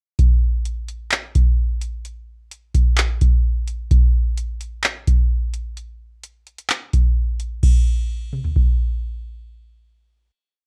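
A booming analog drum machine carries this short, dreamy, blissful hip hop piece at 129 BPM in a half-time feel, its dry, up-front sparse beat of deep kick, metallic hi-hats with fast rolls, handclaps, toms and crash cymbal running from 0.2 to 8.7 seconds through a verse before a final hit at 7.6 seconds, all in a rough home-demo mix with little reverb.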